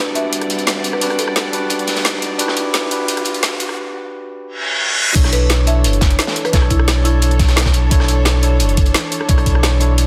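Dreamy and soulful, this liquid drum and bass excerpt moves at 174 BPM in B minor, built from an Em9 build-up that gives way to a Bm11 drop at 5.2 seconds. A bell-like tine electric piano with delay and a distant, lush bowed string section with vibrato and sidechain pumping carry the harmony throughout, while a dry, woody marimba with a buzzing, dark tone plays the melody from the background, also through delay. Two drum kits run from 0.2 seconds: an overdriven electronic kit with a woody snare, bright hats, rim clicks and crash cymbals, and a gritty, saturated breakbeat kit with a medium-tuned snare and rolled-off top sitting further back. The opening half builds with a filter sweep, a background riser, a short break and a reverse cymbal leading into the drop. There a deep, mellow sine sub bass with an octave comes up front alongside a knocking, overdriven electronic kick. The whole mix sits in a lush hall reverb under a dense, heavily limited modern master.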